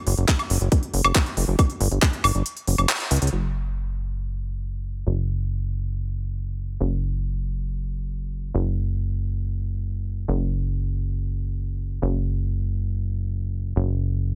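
Psychedelic and driving, this psychedelic trance excerpt moves at 138 BPM in a straight 4/4, carried by a punchy, funky analog bass built from sawtooth and square waves with a fast filter pluck that sits up front from 0.1 s to the end at 14.3 s. A tight electronic kick and a crisp, tape-warm garage kit of handclaps, hi-hat and woodblock, both re-recorded in a large room, drive the opening, with the kick dropping out at 2.5 s before a band accent at 2.9 s and a drum fill at 3.1 s. After the drums stop at 3.4 s, the plucky bass carries the rest alone in a dry sound.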